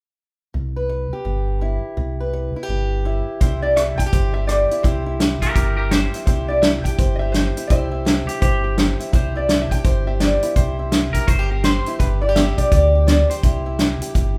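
Heartfelt and nostalgic, this fragment of a honky-tonk and classic country tune rolls along with a swung feel. It opens with a bright, boxy picked acoustic archtop guitar, its fresh strings and finger squeak audible, over a deep, full sub bass with octave that sits up front with a sine-like tone. At 3.4 seconds a lap resonator guitar takes the melody, played slide with fingerpicks for a mellow yet metallic, nasal voice, while a natural country drum kit joins with hi-hat, rim click, a medium-tuned snare and a punchy kick in a small-room sound. From 5.4 seconds a clean, twangy electric guitar adds a scooped second line in brief phrases, bathed in spring reverb. The whole band sounds like it is playing live together in one room with light reverb, moving from C to G and back to C near the close.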